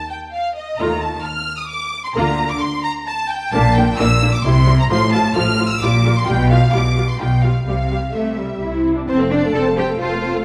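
In a straight 3/4 at 131 BPM, this quick, spirited classical-period movement for string orchestra opens in Bb major with the two violin sections alone, a close, expressive first violin section carrying the melody while a clear, intense second section sits distant in the background, before violas, cellos and double basses join at 0.8 s and the music settles into F major from 3.5 s. The violas add lush, distant accompaniment, while a rich, smooth cello section and woody double basses form the graceful bass, all bowed with vibrato. A moderate recital-hall reverb gives the dark, warm production its space, and the fragment, cut from a longer piece, closes on an F chord at 9.1 s.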